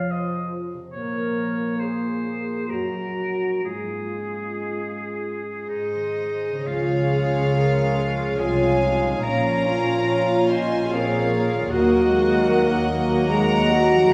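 A tender, slow romantic orchestral movement in 3/4 and Db major, drifting with rubato between 54 and 77 BPM, opens with a clear oboe and a mellow flute ensemble carrying second lines over warm sustained French horn chords and ringing fingerpicked harp arpeggios; sul tasto violins enter at 5.7 s with a floating, smooth-topped melody and a pure second line, and at 6.7 s soft background violas, bright tight trombone chords, dark cellos with light vibrato and close double basses fill out the accompaniment and bass, inside a wet scoring-stage reverb.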